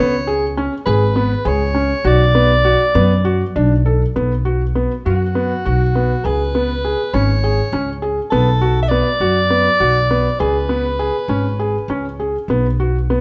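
Contemporary chamber music in 7/8, urgent yet hypnotic, in which a mellow, distant soprano saxophone carries a jazz-style solo melody until 12.2 s over soft, felt-muted upright piano arpeggios with audible action noise and a woody pizzicato upright bass, the trio set in a dark recital-hall ambience.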